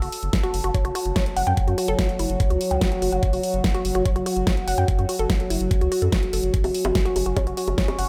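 A resonant sawtooth drone with moving overtones holds an F#5 chord from the start, joined at once by a woody, wave-folded pluck riff under a filter sweep with chorus and tape echo, a deep, round analog bass up front, and a big-room dance kit of bongos, hi-hat and a huge snare, with both drone and pluck pumping against the sidechain. At 0.3 seconds a knocking electronic kick enters up front in a small room, driving this psychedelic trance passage at 145 BPM in straight 4/4, tuned to A4 = 439 Hz. The drone's slow attack and long release, the pluck's noise layer and moving notch, and the bass's nasal, dark tone sit in light digital reverb across this brief 8-second cut from a longer piece.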